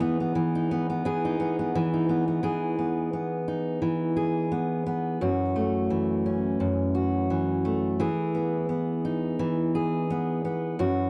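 A dry, close studio sound with a 1970s feel puts a lone fingerpicked steel-string acoustic guitar up front, its dreadnought body warm and full, with finger squeak audible on the strings. This short pop excerpt moves at an easy 86 BPM in E major with a light sixteenth-note swing, its carefree, sunny mood drifting from Emaj7 to F#m7 at 5.2 seconds and settling back on Emaj7 at 8.0 seconds.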